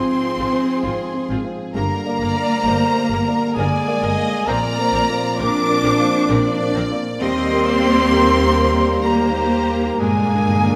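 A wet scoring-stage reverb surrounds this emotional film-score cue, which is cut from a longer piece and moves at a rubato 66 BPM in 3/4 with a longing, bittersweet mood. A rich, bowed violin section carries the melody with vibrato, while a second violin line, an airy silver concert flute and a mellow, distant cor anglais add supporting lines in the background. A felt-muted upright piano gives soft, intimate accompaniment with audible action noise, and a mellow French horn section holds sustained chords behind it. Underneath, a lush, close cello section anchors the bass from the start, joined at 0.4 seconds by a clear viola section and a smooth, even double bass section. The harmony moves through Fm/Ab, Gm, Bbadd9 and Eb before returning to Gm, and a very quiet, dry timpani fill played with hard mallets arrives at 10.0 seconds.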